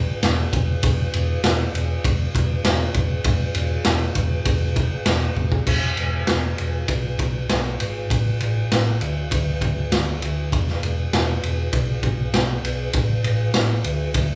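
A live band in one room comes through with a small-room feel set inside a moderate studio reverb, giving this short classic rock excerpt a raw, close character. The mood is swaggering and sunny, in a straight four-four feel. A hollow-body, short-scale electric bass opens at 0.0 seconds, picked and amped, with a dark, round tone in the low register. The garage drum kit joins at 0.2 seconds and sits up front, its acoustic sound saturated and gritty with a rolled-off top, a punchy kick, a medium-tuned snare and a pumping room, plus crash and ride cymbals. A drum fill at 5.4 seconds carries the groove into the next section, and the two parts run on together to the close.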